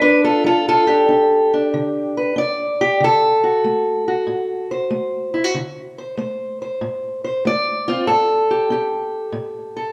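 A swung eighth-note feel at 95 BPM in 4/4 drives this short passage of gritty, soulful acoustic country blues in D mixolydian, cut from a longer piece. A fingerpicked steel-string acoustic guitar carries the whole thing solo, spanning A2 to D5 and sitting up front in the mix. Its parlour-style tone is dark, woody and boxy, with the dull bite of old strings. The harmony opens on G7, moves to D7 at 3.0 seconds and reaches A7 at 8.1 seconds before the clip ends at 9.9 seconds. Captured live in one room, the guitar is bathed in a wet, large studio reverb with a 1.2-second tail that lends the playing a roomy sense of space.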